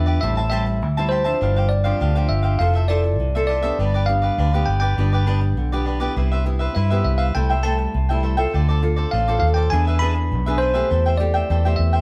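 A festive, playful samba at 101 BPM opens with the full band together in a moderately reverberant stone room: a bright, clean tine electric piano carries the melody while a crisp, picked cavaquinho and a small, fingerpicked nylon-string guitar with audible finger squeak fill out the accompaniment. Underneath, a dark, round, foam-muted vintage electric bass sits up front, its amped tone anchoring chords that move from Am7 through Fmaj7 and Cmaj7 to E7 before settling on Am7/E near 10.9 seconds. The whole passage sounds like a live band captured in one room, cut from a longer piece.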